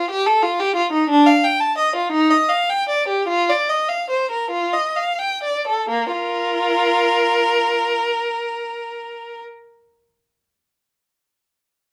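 This classical, baroque-style suite movement for unaccompanied violin is an excerpt from a longer piece, flowing and radiant in Bb major. It sits in 6/8 at roughly 41 to 61 BPM in dotted quarters, with a rubato feel, and the tuning rests at A4 = 441 Hz. A lone bowed violin carries everything, its tone clear and focused with vibrato, spanning Bb3 to A5 and placed up front in a moderate studio reverb. Over the first section the tempo slows from 0.1 to 5.9 seconds, as the harmony moves through Dm, Eb, Bb/F and F7. At 5.9 seconds a new section opens on Bb5, and the violin falls silent at 9.4 seconds.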